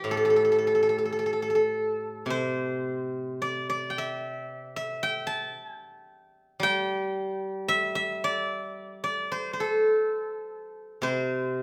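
Chinese traditional solo plucked-string music, contemplative and full of longing, unfolds in a free, rubato feel as a single steel-string zither carries the whole of this brief excerpt from a longer piece. Played with fingerpicks, the zither sounds silvery and ringing, sitting up front and spanning a broad range from low to high register. A wet recital hall reverb surrounds it, and after a short opening passage the music moves into a new section at 2.3 seconds that carries on to the close at 11.6 seconds.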